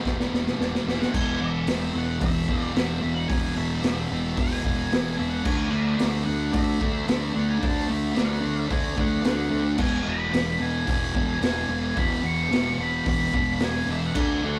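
A thick, double-tracked fuzz guitar riff sits up front in this rowdy, raw garage rock excerpt, joined by a raw garage drum kit with a high-tuned snare, punchy kick and dark cymbals that opens on a fill, a round, overdriven picked bass growling in the background, and a dark octave-fuzz lead guitar entering at 0.9 s, all captured as a rough rehearsal-room recording in a stone room.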